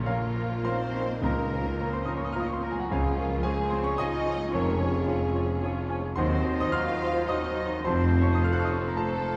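Passionate and brooding, this classical fragment in Bb minor moves in a rubato 3/4 at about 109 BPM, led by a clear, up-front concert grand piano whose melody spans deep bass to high treble, with audible action noise and long sustain. Around it a full orchestra gathers in a wet concert hall: a very quiet violin section shares the melody with vibrato and portamento while a lush second violin line, violas and cellos fill the middle, and an airy flute section, mellow clarinet, distant oboe, dark bassoon and a tight, roomy French horn section add soft second lines and sustained chords. From 1.2 to 8.3 seconds a rich, focused double bass section and a soft-edged tuba deepen the low end beneath a progression that moves from Bbm through Db and Cdim/Eb to F.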